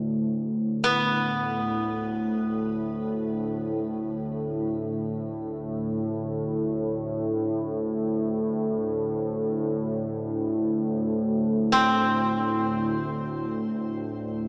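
World meditative music in free time, spacious and haunting, where a deep, moody sawtooth pad with chorus holds a low drone from the start and a bright, silvery steel-string zither played with fingerpicks rings up front through shimmer reverb from 0.8 s, all set in a wet cathedral reverb with a small speaker sound, cut from a longer piece.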